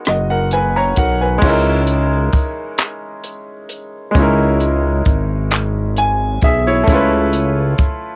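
A slow, straight six-eight lilt carries this sultry, yearning R&B excerpt. A compact cocktail kit sits up front with a dry, acoustic sound, a punchy kick, rim click, handclaps, hi-hat and a dark crash cymbal, while a fat, detuned sawtooth analog bass adds saturated, sustained low notes. An intimate concert grand piano with audible action noise and short sustain plays clear accompaniment through plate reverb and cassette grain, adding a fill from 5.5 to 6.9 seconds before landing on an altered dominant chord, in a lightly reverberant home cassette recording.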